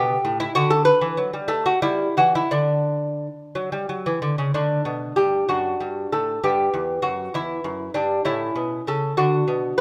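A solo lute opens this short passage from a longer baroque-style dance, its fingerpicked gut strings sounding mellow and delicate from the first note. The music is serene and flowing, moving in a lilting 6/8 with a free, rubato feel that lets each phrase breathe. The instrument's double courses, some strung in octaves, give single lines a gentle shimmer, and the part ranges from a deep low E up to a B in the treble. Around 4.6 seconds a second section begins, drifting briefly into a minor chord before settling back onto its home harmony near the close at 9.8 seconds. The lute sits up front in a recital hall whose moderate reverb lends an airy halo to the acoustic tone.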